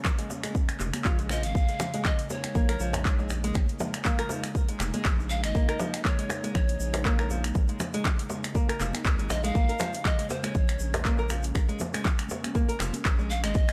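An afro house groove at 120 BPM in 4/4, with a light 16th-note swing, rides on a punchy, layered electronic kick set up front, joined by an overdriven afro-pop kit of finger snaps, handclaps and metallic hi-hats. Deeper in the background sit acoustic congas, a deep djembe played with soft hands, and a grainy tube shaker, giving the pulse an earthy, hypnotic texture. A round, dark analog bass enters at 0.8 seconds, pumping against the kick, while a boxy, fingerpicked flamenco guitar plays arpeggios through digital delay and the same sidechain pumping. In the background, an ethereal, airy pad holds sustained chords with ensemble chorus and built-in reverb, resting on a single Bbm7 in Bb minor. From 1.3 seconds a breathy, hollow bamboo pan flute carries the melody, with vibrato, tongued chiff, rolled-off highs and digital delay, over a dry overall mix in this section cut from a longer piece.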